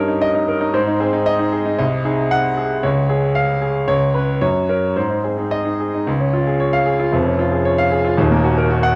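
A clear, open grand piano with long sustain sits up front in a sparkling, brilliant virtuoso classical study in 2/4 with a rubato feel, cut from a longer piece, its nine seconds moving to a new section at 6.1 seconds, all heard through a recital hall's moderate reverb and the warbly pitch drift of worn old cassette tape.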